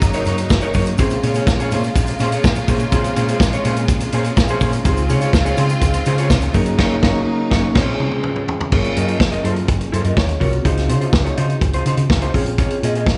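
A punchy, up-front vintage drum kit with dark cymbals drives this sultry, danceable disco excerpt, joined by a round, hollow-body electric bass, a slightly broken-up guitar and a mellow tine electric piano, both carrying a slapback echo, over chords moving through Bbm9, Dbmaj7 and Gb6. Lush, bowed strings hold sustained chords until 8.7 seconds and a grainy egg shaker sits in the background until 6.8 seconds, as the band hits an accent capped by a drum fill. The whole thing is heard as a live gig through a venue's PA, with club reverb and a dulled top end.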